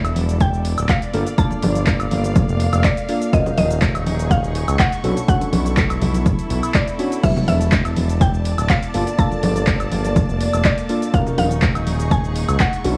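A straight 4/4 deep house groove at 123 BPM sets an overdriven electronic kick up front with a punchy, overdriven analog drum machine of crash, handclaps, hi-hat, shaker and woodblock, plus ringing congas in the background, under a smooth, sawtooth-edged synth bass with tube saturation and sidechain pumping, dark detuned chord stabs with chorus, phaser and a moving notch, a woody FM mallet-like pluck melody through chorus and analog delay, a very quiet warbling lo-fi pad, and a rich bowed studio string section with light vibrato, all moving through moody Em9, Gm9, D#m9 and Bm9 chords, while shimmering vintage string-machine violins join at 7.2 s and vinyl crackle and small-room ambience lend a warm, nostalgic haze.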